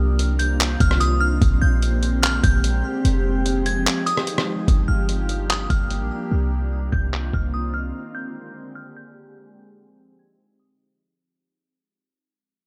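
Spacious and ethereal, this atmospheric cloud-rap hip hop piece moves at 147 BPM in a half-time feel, set in C minor and cut from a longer work. A glassy FM pad sustains mellow chords through Cm11, Bb13 and Fm9, its slow attack and long release softened by ensemble chorus and its own reverb, with sidechain pumping giving it a gentle pulse. Up front sit a deep, boomy 808-style bass with a clean sine tone that plays until 7.9 seconds, and a gritty, pitched-down sampler-style drum kit of handclaps, hi-hat, rim click and a thumpy kick, the kick dropping out briefly before the second section begins at 4.7 seconds. High above, a crystalline synth bell carries the melody with a vintage, warbling character shaped by chorus, phaser and digital delay. The mix is dry overall, and from 4.7 seconds a low-pass filter sweep and fade-out close the passage as the drums stop and the pad and bell linger.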